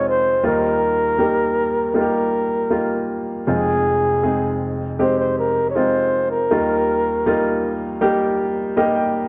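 A breathy, whispered flugelhorn with vibrato and a soft attack carries an intimate, jazz-tinged melody over a clear, polished baby grand piano from the start of this emotional, melancholic 79 BPM pop fragment, cut from a longer piece, moving through Ebadd9, Fm7 and back to Ebadd9, bathed in a moderate plate reverb and the worn, warbling pitch drift of old cassette tape, before the horn stops at 7.8 seconds and the piano closes with a brief fill from 8.4 seconds.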